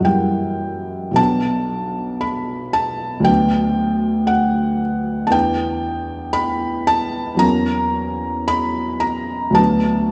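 A felt-muted upright piano carries this brief romantic nocturne alone, its soft, mellow tone sitting up front and intimate, with the mechanical action audible beneath the notes. The mood is wistful and yearning, unfolding in B minor at a slow 52-60 BPM in 4/4, with a rubato feel that lets the time breathe. Spanning B1 to B5, the piano moves through a harmonic path that opens on F#7b9, settles onto Bm at 1.2 seconds, and passes through Bm/D, Em7 and F#7/E before arriving back on Bm/D at 9.6 seconds. A lush concert hall reverb with a long 2.4-second decay surrounds the instrument, blended with a close small-room ambience that keeps its natural character near at hand. Lasting about 10 seconds, this fragment is cut from a longer piece and captures a single reflective passage.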